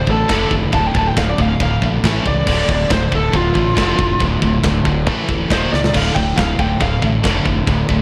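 A high-gain lead guitar carries the melody in a picked solo, its distorted tone touched with tape echo, until it drops out at 7.0 s. This epic, relentless heavy metal excerpt has a straight 4/4 feel. Beneath it, an overdriven, double-tracked electric guitar and two bright, distorted high-gain rhythm guitars play a low, picked riff in the background over Dm and A5 chords, while a growly, punchy fuzz bass and an up-front, tight acoustic kit with china and crash cymbals drive hard, with a drum fill at 5.7 s, all in a dark, dry mix.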